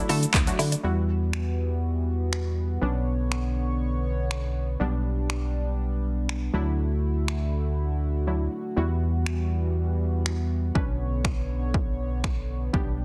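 A dense, heavily limited dance-pop excerpt in a digital ambience, bittersweet yet confident, where a punchy analog drum machine and a round, dark FM bass sit up front, the bass with sidechain pumping, a glassy wavetable pluck and a shimmering, retro pulse-width pad carry the chords, a clean direct-recorded electric guitar riff and a barely audible tube shaker appear only until 0.8 seconds, and a brief silent gap falls at 8.3 seconds.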